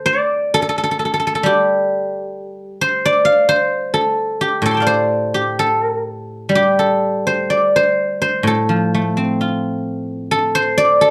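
Chinese traditional solo plucked-string music, longing and contemplative, unfolds in a free rubato over a 2/4 metre in this fragment cut from a longer piece. A lone guzheng, played with fingerpicks, carries the whole passage from 0.0 to 11.1 seconds across a span from A2 to D6, its silvery, ringing tone placed up front and touched with a slapback echo. A moderate studio reverb and a dark production surround the instrument.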